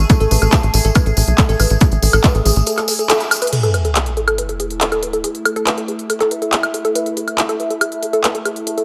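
A woody, wave-folded pluck carries the riff from 0.1 s onward, its percussive, organic tone, moving notch and short decay treated with chorus, digital delay and sidechain pumping. This hypnotic psychedelic trance excerpt runs at 140 BPM in a straight 4/4, built around an A5 chord, with a nasal, resonant drone holding sustained chords underneath, its evolving overtones given chorus, built-in reverb and pumping. A tight, dark sequencer bass built from detuned sawtooth, square and triangle waves drives the opening alongside a punchy, tape-warm electronic kick, both up front until the kick drops out near 2.3 s. A techno kit of crash, handclaps, smooth hi-hats and woodblock runs throughout, joined early on by a jingly, bright tambourine that is close and dry. A filter sweep on the arpeggio, an accent and a drum fill lead into a sub drop impact at 3.5 s, after which a filter sweep moves across the drone, all sitting in light reverb.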